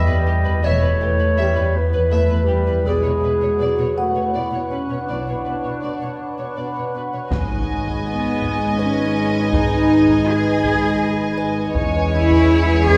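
A woody marimba riff with rosewood bars sits low at the heart of this tense, eerie suspense cue, a cinematic film-score passage in 3/4 at 81 BPM in G# phrygian, cut from a longer piece. Around it, a violin section carries the melody with soft, sul tasto bowing and light vibrato, while a dark, distant clarinet traces a second line until 6.6 seconds. A smooth viola section, an intimate cello section and a double bass section in the background fill the lower strings. A shimmering, ethereal pad with chorus, phaser and octave-up shimmer holds sustained chords, and a delicate, tinkling music box adds texture. At 7.3 seconds the harmony moves from Em and Bmadd9 to G#m, and a huge, bright impact lands as a close, dry taiko ensemble enters alongside mellow French horns on sustained chords and a floating second violin line. The whole sits in a resonant recital-hall reverb that gives it the feel of a church or concert hall.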